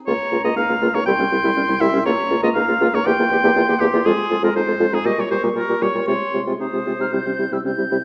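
In a restless, uneven 4/4 at 120 BPM with plenty of rubato, this quick classical-period movement for wind quintet sweeps through F minor with a stormy, restless mood, and it is cut from a longer piece. The concert flute carries the melody high in its range, airy and expressive with vibrato and tongued notes, yet it sits distant in the mix, while the bright oboe, up front with light vibrato, threads a present second line beneath it until 7.6 seconds. The clarinet keeps a clear, vintage-tinged accompaniment in the background, and the warm French horn adds a roomy, far-off inner voice. Anchoring everything is the mellow bassoon, placed up front as the bass line. The harmony moves restlessly from Bbm/Db to C and back, then presses through C7/E, Fm, Gdim/Bb and Fm/C before settling on C at 7.1 seconds, all bathed in the wet glow of a recital hall.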